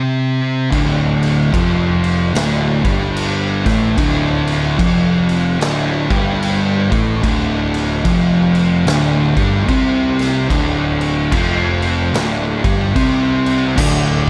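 Up front, a raw garage drum kit pounds with a punchy kick, a medium-tuned snare and crash cymbal, its sound saturated and gritty with a rolled-off top in a bright stone room that pumps. This is a brooding, heavy stoner and doom metal excerpt at 74 BPM in 4/4 with a swung eighth-note feel, sitting on D minor. Two thick fuzz guitars open the piece at 0.0 seconds with a riff, one warm and the other dark and set in the background. A growly fuzz bass, direct and amped with overdrive, joins alongside the drums at 0.7 seconds. At 13.8 seconds the harmony drops out and a bright, double-tracked distorted electric guitar slips in behind the others for a brief riff. Light reverb surrounds the mix, and the clip is cut from a longer piece.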